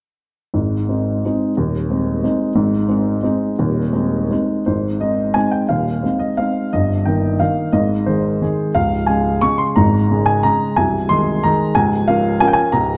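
Graceful and playful, this short excerpt of a classical piano waltz in Ab major moves in 3/4 at 152-192 BPM with a rubato feel, as a solo upright piano with a woody, long-sustaining, up-front tone plays from 0.5 to 13.0 s in a dark, warm production set in a moderate recital hall reverb.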